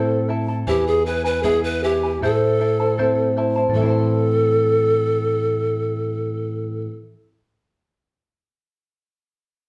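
Festive yet melancholic, this short Andean folk excerpt in A minor moves at 78 BPM in a straight 2/4, with a breathy, reedy bamboo pan flute carrying the melody up front with vibrato and a soft, chiffy attack, while a mellow, fingerpicked charango adds shimmering double strings and a dark, full-bodied, thumb-plucked nylon-string guitar sits up front beneath them, the ensemble playing live in one room with a large studio reverb as the harmony moves from Am to E and back.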